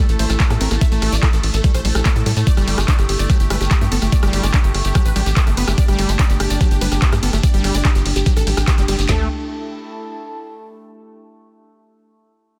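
Alien and hypnotic, this psychedelic trance excerpt opens on a drop, with an overdriven garage kit of knocking kick and woody snare up front over a tight, driving sawtooth sequencer bass and a techno kit whose warm hats and claps carry a large-room sheen. An airy, detuned supersaw stab carries the melody through phaser and delay, while a squelchy, screaming acid riff, a ring-modulated drone with moving overtones, a grainy shekere and a warbling, lo-fi pad sit further back, most of the synths pumping to the sidechain. A band accent lands at 8.7 seconds before the pad carries on into a brief closing section, outlasting the other parts until 10.7 seconds, all in a dense, heavily limited master.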